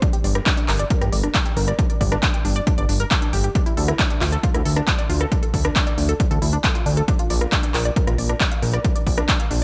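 A lush, detuned unison pluck spins sawtooth arpeggios through cassette-tape grit, sidechain pumping and delay, alongside a punchy, overdriven electronic kick and a layered big-room kit of handclaps, crisp hi-hat and rim click, while a fat, tube-saturated analog bass with a filter sweep enters at 0.2 s to pump underneath in this soaring, bittersweet uplifting trance excerpt that moves over G5, D5 and Bb chords in a dry mix with the drums and bass up front.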